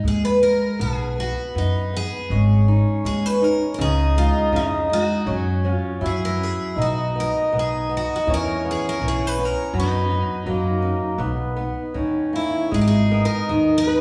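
Passionate and longing, this rubato fado-style ballad in B major at 80 BPM sets a shimmering, octave-doubled melody on picked twelve-string acoustic guitar over fingerpicked flamenco guitar accompaniment and a woody, thumpy pizzicato upright bass, while a reedy, up-front mellow accordion adds a second line from 0.8 s, the ensemble heard in the wet reverb of a church or concert hall.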